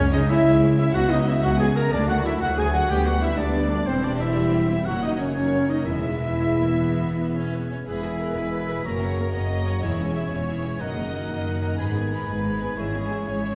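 Triumphant and adventurous, this cinematic orchestral passage in E lydian moves at 122 beats per minute in a flowing 12/8, cut from a longer piece. A lush, bowed violin section carries the melody with focused vibrato, while a second violin line, a clear oboe, a quiet clarinet and a distant, pure silver flute weave supporting lines alongside a rich viola accompaniment. Mellow French horns hold tight sustained chords in the background, joined by a very quiet trombone section. A dark trumpet adds stabs in the background, and a ringing, fingerpicked concert harp spills arpeggios across a broad range. An intense cello section and a smooth, even double bass section anchor the low end. The whole orchestra sits further back in a wet scoring-stage reverb, and at 7.9 s the music shifts into a new section that moves through F#, C#m/E and G#m.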